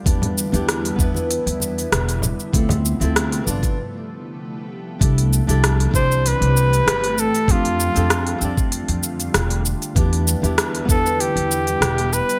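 Sunset chillout in C major at 97 BPM with a gentle swing, smooth and relaxed, where a fingerpicked nylon-string guitar with sampler grit and delay and an ethereal, chorused pad carry the chords over a woody pizzicato upright bass, a knocking electronic kick, a tape-warm R&B kit of smooth hats, rim click and shaker, and low-tuned congas in the background until 3.7 seconds, before a break at 3.8 seconds leads to a close-miked flugelhorn melody with light vibrato entering at 6.0 seconds, all in a bright 1980s-style digital production.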